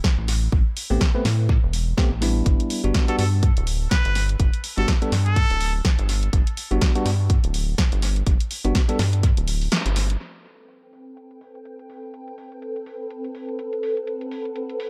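An echo-heavy, lightly reverberant mix carries this deep, late-night deep house excerpt, where an up-front electronic kick and a house kit of punchy snare and bright hats, low-pass filtered and tape-echoed, drive a rubbery, nasal square bass and clean, bell-like electric piano stabs, both pumping; a brilliant straight-muted trumpet with vibrato drifts through dub echo from 3.1 seconds, the kick drops out at 9.7 seconds, and silky, phased string-machine chords with ensemble chorus arrive at 11.1 seconds as a filter sweeps across the drums.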